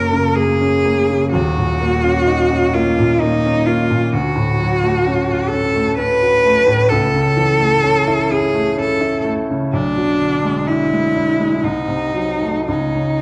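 Set in a dark recital hall with a lingering reverb, this 13.2-second excerpt of a romantic classical duo moves in a solemn, melancholic three-beat lilt with flexible rubato. An up-front solo cello sings the melody in its tenor range with a rich, focused, bowed tone and expressive vibrato. A clear, intimate baby grand piano accompanies from deep bass to middle register, its long sustain and audible action noise adding natural closeness.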